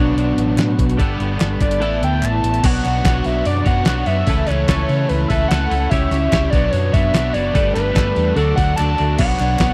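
A detuned 8-bit drum machine sets a straight 146 BPM pulse in 4/4 from 0.2 s, its thumpy kick dropping out with the snare from 1.8 to 2.6 s, while crisp group handclaps join in the background at 0.6 s. Over them, this bittersweet, cool indie rock fragment in B minor opens with a screaming, saturated synth lead soloing through tape echo, backed by a round hollow-body bass, a twangy twelve-string guitar riff, an overdriven guitar riff in ensemble chorus and very quiet, mellow rotary organ chords, all in a dry, close 1970s-style studio sound with faint mains hum.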